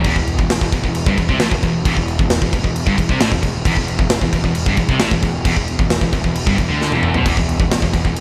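Driving straight 4/4 at 133 BPM in E minor, this relentless heavy metal excerpt pairs a bright, scooped high-gain guitar riff with a sludgy overdriven guitar in the background, a fuzzy picked bass underneath, a punchy up-front drum kit with bright cymbals that plays a fill at 6.8 seconds, and a dark, double-tracked overdriven guitar that's barely audible at the very start and again from 7.3 seconds, all in a small room with light reverb.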